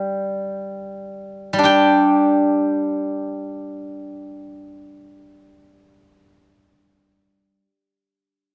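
A solo steel-string zither, played with fingerpicks, carries this brief fragment of Chinese traditional plucked-string music, its tone silvery and ringing. The mood is one of elegant longing, unfolding in free time and spanning G3 to G5. The opening phrase slows as it goes, easing over its first 1.6 seconds before a longer passage takes over and runs to 7.2 seconds. The acoustic instrument sits up front, touched by light reverb, and the whole piece is tuned slightly below standard pitch, at A4 = 439 Hz. Cut from a longer piece, the zither sounds alone until it stops at 7.6 seconds.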